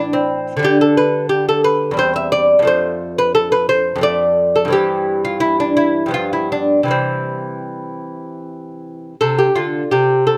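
Classical baroque-style dance in a rubato triple metre, this solemn, grave excerpt features a solo lute, fingerpicked and up front with delicate nylon double strings and some octave-doubled strings, caught by close, detailed microphones in light reverb as it moves from A minor through C and F harmonies before a section restart at 9.2 seconds.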